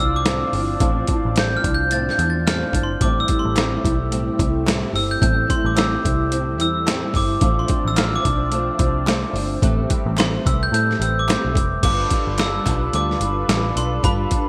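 A wistful, lonely slice of indie and bedroom pop at 109 BPM in A minor, where a bell-like glockenspiel struck with hard plastic mallets carries the melody as a solo through the first 11.8 seconds, over a dark, fingerpicked flamenco guitar with ensemble chorus and vibrato, a lush, detuned sawtooth pad sitting softly in the background, and a round, foam-muted vintage electric bass. A gritty, pitched-down boom bap sampler kit with a thumpy kick and gated reverb sits up front from 0.3 seconds, while a hollow, distant group handclap enters at 3.6 seconds, very quiet. Chords drift from Dm7 through Am7 and Am9 before turning to G7 at 11.8 seconds, all wrapped in a bright 1980s-style digital production with light reverb.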